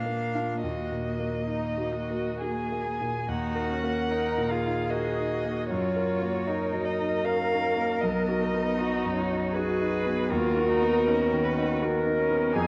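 In a flexible, rubato triple metre, this solemn, elegiac slow movement for piano quartet unfolds as a brief passage cut from a longer piece. A single con sordino violin carries the melody with vibrato and portamento, its dark, veiled tone shadowed by a muted cello on a second line. The cello sounds distant, with light vibrato, soft attacks and its own portamento. A clear concert grand piano sits up front as accompaniment, its deep bass and long sustain set against the hushed strings, while a muted solo viola adds a further dark layer beneath the violin. The harmony moves through minor-key shadings, and a new section begins at 3.3 seconds. The recording is bathed in a wet scoring-stage reverb and coloured by worn, warbling cassette tape with a wavering pitch drift that lends the whole an aged, fragile quality.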